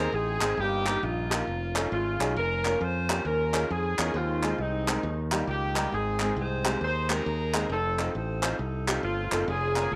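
A swung 4/4 pulse at 135 BPM drives this jubilant, hopeful uptempo gospel in Ab major, cut from a longer piece, with a group handclap entering at 0.4 seconds, hollow and human in a live room. Up front, a saxophone section carries the melody in a smooth-topped jazz style with light vibrato, over a clear, natural grand piano accompaniment and a bright, direct fingered electric bass, with the saxophones and piano sounding through cassette tape. The whole home recording sits in a small room with light reverb, moving through changes such as Eb9sus4 and F7alt.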